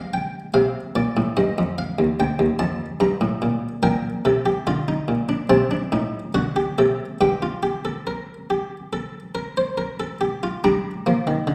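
This is a classical, baroque-style three-part fugue for solo harpsichord, serious and solemn in mood, moving at a measured pace in a straight four-beat metre. The single instrument is an Italian-style harpsichord with its buff stop engaged, giving a muted, lute-like pluck that sounds dry and up front on its own. It covers a broad span from low D2 up to Bb5 and plays alone across the whole recording. The harmony moves from an unaccompanied opening through F7 and Bb before settling toward G minor around 3.8 seconds, then passing through a diminished chord and D on its way back to G minor. The recital hall around it is wet and reverberant, heard from further back in the room, so a soft halo of space surrounds the closely caught plucks. The passage is cut from a longer piece, ending at 11.5 seconds.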